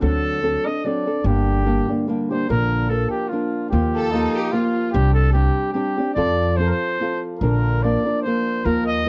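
Mariachi-flavored Mexican folk in a lilting, rubato triple metre, this short excerpt from a longer piece feels romantic and festive, with a mellow trumpet carrying the melody in a classical style with light vibrato, its tone slightly distant and roomy. Underneath, a dark, fingerpicked nylon-string guitar and a woody, growly pizzicato upright bass sit up front, while a rich, smooth-topped chamber violin section adds a brief bowed second line between 4.0 and 4.9 seconds. The sound is dry and close, like a 1970s studio session with a small room reverb.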